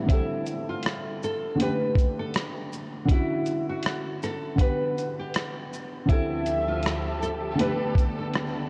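A lightly swung sixteenth-note groove in 4/4 comes from a compressed, sampler-style drum kit of hi-hat, rim click, shaker and a thumpy kick, muffled and re-recorded in a large room yet sitting up front. This is a nostalgic, mellow lo-fi hip hop excerpt, cut from a longer piece, built on lush extended harmony that drifts from Dm11 through Dmaj9 and Gmaj7/D to A9sus4/D over a held D bass. A dark upright piano carries the accompaniment close and intimate, its woody, boxy tone slightly detuned, with short sustain and audible action noise, softened by cassette tape and a low-pass filter. Alongside it, a fingerpicked nylon-string guitar plays the melody in a bright, full-bodied classical voice, bathed in lush chorus and a diffuse ambient delay. A distant bowed string section, expressive with vibrato and portamento, returns at 6.1 seconds to sustain the closing chords. The whole mix is dreamy and soaked in a cathedral-like reverb, with a cassette-tape haze.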